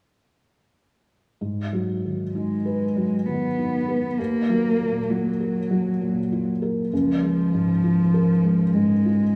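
A lush, wet hall reverb with a 2.9-second tail surrounds this rough home demo, and a studio ambience sits beneath it. This short neoclassical piece for piano and strings, cut from a longer work, moves at 66 BPM in a rubato 3/4, and its melancholic, longing mood rests in G# dorian, tuned to A4 = 438 Hz. A felt-muted upright piano enters at 1.4 seconds as accompaniment, spanning C#2 to B4 with a mellow, vintage tone, and its audible action noise keeps it intimate and up front. At 2.3 seconds a single bowed cello joins as a second line, sitting between E#3 and B3. It is played sul tasto with vibrato, a soft attack and a smooth top, giving it a close, shadowy voice. Both parts carry on through the passage until 9.4 seconds, over a progression from G#m7 to D#madd9 to A#m7/C#.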